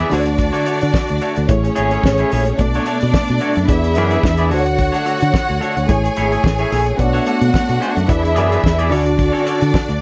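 A warm, up-front fingered electric bass drives this danceable disco excerpt, riding over a dry, damped 70s drum kit of hi-hat, tight kick and fat snare. Two close, lush bowed string sections fill out the sound, one clear and focused carrying a second line and the other woody and holding sustained chords, joined by a bright, twangy, picked clean electric guitar and a reedy, barky electric piano with gentle overdrive and fast tremolo tucked in the background. The harmony cycles through Dmaj7, Amaj7, Bm9 and E7 under light reverb and a layer of vinyl crackle.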